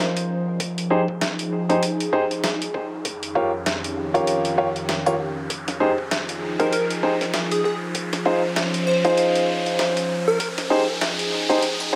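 Set in a moderate plate reverb, this funky, swaggering glitch hop excerpt in F minor moves at 98 BPM in 4/4 with a 58% swing on the sixteenths. Up front, a warbling, nostalgic lo-fi pad holds sustained chords with chorus and sidechain pumping, and a clear baby grand piano plays stabs through a low-pass filter and delay. A compressed, pitched-down sampler-style kit supplies gritty hi-hat and a medium-tuned snare, while a thumpy electronic kick sits in the background. The passage is one long build-up under a filter sweep, with an electronic riser entering at 0.4 seconds and a punchy, catchy square-and-sine unison lead carrying the melody with delay, heard in a brief blip at the very start and again from 6.6 to 10.5 seconds, over chords that shift between Dbmaj7/F, Fm7 and Eb7/F.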